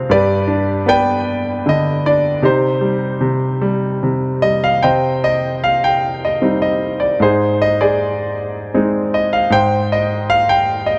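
A clear, up-front concert grand piano carries this melancholic, reflective piece of lyrical classical solo playing. It is heard in an excerpt of roughly 11 seconds, in 3/4 at about 77 BPM with a rubato feel. The piano's smooth, vintage tone has a deep bass and short sustain, set in a moderate spring reverb, with tape echo on the instrument itself. The harmony starts in C harmonic minor, moving from G to Cm, then settles into C minor from 4.8 s with Ab and Fm/Ab chords.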